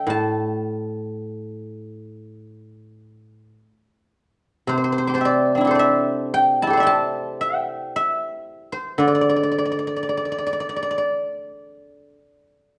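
Contemplative and longing, this short cut from a longer piece of Chinese traditional solo plucked-string music features a lone guzheng, mellow and silvery under its fingerpicks, ringing up front across a span from A2 to D6 in a free, rubato 4/4 that shifts into a new section at 4.7 seconds, all set in a moderate recital-hall reverb.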